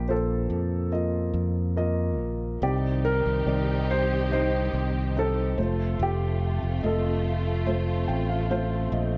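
Melancholic and emotional, this short pop excerpt unfolds at an unhurried, straight pulse. A dark, mellow grand piano carries the melody in a close, intimate voice with audible action noise, its line touched by a digital delay, while a second piano part supplies smooth, vintage-toned accompaniment across a broad register. Beneath them, a modern fingered electric bass sits bright, direct and up front, anchoring the harmony as it moves from Bbsus4 to Cmadd9 and on to F. At 2.6 seconds a studio string section enters with sustained chords, bowed and lush, with a woody, soft-attack ensemble sound and vibrato. The piano melody falls away at 7.6 seconds, and a brief grand piano fill closes the passage, all set in a light studio reverb.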